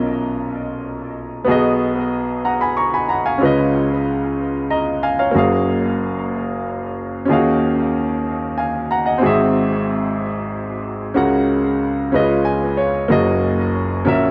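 A clear, up-front baby grand piano carries this short gospel passage alone, spanning a broad range from deep bass notes to bright upper tones in a straight 6/8 with an uplifting, soulful mood. Rich extended chords move through the progression toward a resolving F#69, with brief piano fills at 4.4 and 12.1 seconds. Dub echo on the piano and light reverb give the mix a lingering, echo-heavy sound, and the clip is cut from a longer piece.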